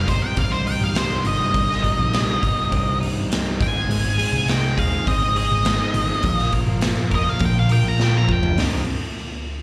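This fragment of a longer piece sounds like a live club gig heard through the venue's PA, with a touch of club reverb around an otherwise dry sound. It's quiet-loud alternative rock in a straight four, brooding and angsty, moving from C minor through A-flat to a B-flat power chord. Up front, an octave-fuzz lead guitar plays a dark, distorted solo melody with slapback echo. Behind it, a fuzz guitar grinds out a distorted riff, also with slapback echo, while a twelve-string electric guitar adds bright, twangy, compressed arpeggios. A hollow-body short-scale picked bass gives a round, punchy low end, and a raw garage drum kit sits forward with a gritty, saturated sound, a rolled-off top and the pumping air of a stone room. The drums play a fill from 8.0 to 8.6 seconds, when the solo ends and the music returns to C minor for a new section.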